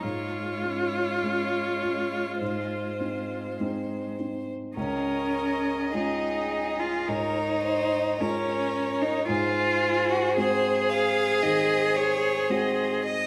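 This classical slow romantic movement for piano quartet, cut from a longer piece, feels tender and serene, moving in a flexible rubato. A clear, focused violin carries the melody with vibrato, sounding close. A cello with a full-bodied tone sings a second line beneath it and falls away at 13.0 s. A viola with a smooth top adds its vibrato to the accompaniment. A dark, mellow baby grand piano supports the strings with long sustain and audible action noise. The harmony settles from Db/Ab toward Db as a new passage opens at 4.8 s, then turns to Ab7 at 9.3 s, all bathed in the generous reverb of a recital hall.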